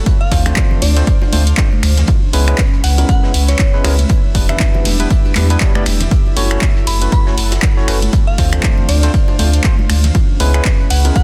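Smooth and warm, this swung deep house groove puts a punchy electronic kick and a round, deep sub bass with tube saturation up front, joined by a tape-coloured analog drum machine of finger snaps, handclaps, hi-hat and ride cymbal, a very quiet brushed kit with a dark, medium-tuned snare, background bongos and congas, barky tine electric piano stabs with sidechain pumping and tape echo, a glassy FM synth bell melody with chorus and tape echo, and two pads (a warbling lo-fi one holding sustained chords and an airy, breathy one pumping in the background), all set in a dry, dense, heavily limited master.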